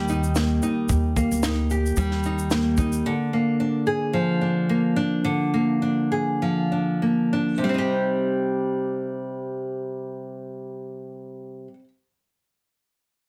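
A lightly swung 4/4 groove at 95-111 BPM opens this reflective, wistful acoustic pop fragment in C minor, with a dry compact cocktail drum kit (punchy kick, high-tuned snare and shaker) and a woody pizzicato upright bass supporting an up-front, fingerpicked nylon-string guitar until 3.0 seconds, after which the small-sounding guitar carries on alone as the tempo slows through 7.6 seconds and the harmony settles from Eb and Bb7/D onto C minor, all heard through light reverb and a heavily compressed, radio-like sound.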